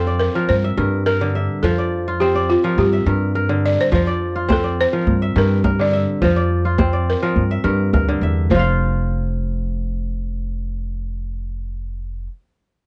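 A ringing, crisp kora sits up front, spinning fingerpicked arpeggios across a broad span beneath this flowing, joyful snippet of West African string and xylophone music. Alongside it, a woody balafon carries the melody with soft rubber mallets, its buzzing tone set in a boxy small-room sound with a touch of plate reverb. A dark, thumpy upright bass on gut strings plucks the low end, also close and present. A deep djembe played with soft hands joins at 3.9 seconds and drops out at 8.8 seconds. The harmony sways between G minor and F. The whole recording has light reverb and carries the worn, warbling character of old cassette tape, with a warbly pitch drift and dulled highs.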